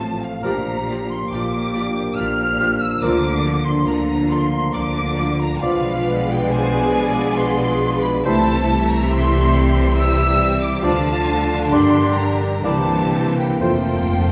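A rich chamber violin section carries the melody high above the orchestra, its focused, bowed tone shaped with vibrato and a smooth top in this solemn, elegiac classical passage in three, cut from a longer piece and played with rubato. Alongside it, a clear symphonic violin section and a mellow, hollow silver concert flute with a crisp attack each trace a second line, joined from 0.4 s by a dark clarinet and a cor anglais. Violas and a soft-attacked bassoon fill the accompaniment, while trombones and French horns hold sustained chords in the background, the trombones bright and tight, and a very quiet concert harp rings out fingerpicked arpeggios. Cellos and double basses anchor the bass with lush bowed vibrato as the harmony moves from Bb6 through Bdim7 and Gm toward a close on F. Timpani with soft mallets add a round fill at 13.6 s, and the ensemble sits in a reverberant recital hall, heard from further back in the room.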